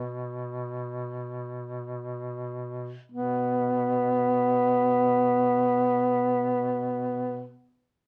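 In free time, this mournful, solemn Caucasian folk fragment slows down over its first 3.1 seconds before a new passage begins. Up front, a dark duduk carries the melody with vibrato and scooped notes, while a second, warm duduk holds a low drone beneath it with the same vibrato and scooped notes, both smooth-topped and played in a folk style until 7.5 seconds. Light reverb surrounds the pair.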